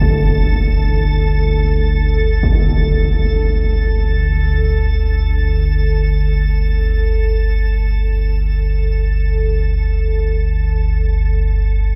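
A vast, echoing space surrounds this brief cut from a longer dark ambient drone piece, its huge reverb tail lingering for 7.8 seconds and giving the whole passage a cavernous, ominous mood. Up front, a deep rumbling drone sits low in the register across the full 12.0 seconds, its sawtooth-and-triangle tone rising on a slow attack, bathed in its own reverb and shaped by a filter sweep. A huge, bright impact marks the opening from the background, muffled by a low-pass filter and gone by 2.7 seconds. Above it all, a quieter icy glass pad holds a single high note, a crystalline blend of detuned sine voices and a noise layer, thickened by chorus and reverb. The result is a still, suspended wash of dark low-end weight against an airy shimmer, resting on one sustained chord.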